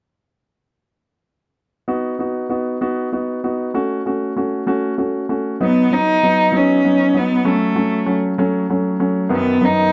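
A gentle 6/8 pulse with a straight feel carries this tender, romantic pop passage, cut from a longer piece. A baby grand piano enters at 1.9 seconds with polished, present accompaniment, and at 5.6 seconds a single bowed cello takes the melody, rich, smooth and even, with vibrato and a distant quality. The close, dry 1970s-style studio sound adds light reverb and a small room ambience.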